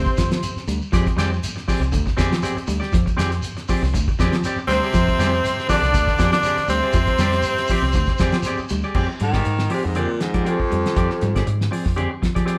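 A raspy, gritty tenor saxophone leads this funky, defiant afrobeat excerpt in F dorian at 120 BPM, a 4/4 groove with a light swing on the sixteenths built over an Fm69 chord. The tenor states its short melody up front in brief bursts, joined in the same spots by a brilliant, tight trombone section in the background and a very quiet trumpet with scooped notes and light vibrato, the horns returning together at 4.7 seconds. Underneath, a cloth-damped, thuddy drum kit with a fat snare, tight kick and dark cymbals sits beside a fingered electric bass, while a grainy, distant shekere adds texture. A dark, clean electric guitar picks arpeggios in the background throughout, and a bright semi-hollow guitar jabs stabs through the rest of the piece. At 9.2 seconds a growling, roomy baritone saxophone with vibrato steps forward for a solo, all captured as a band playing live in one room with a moderate large studio reverb.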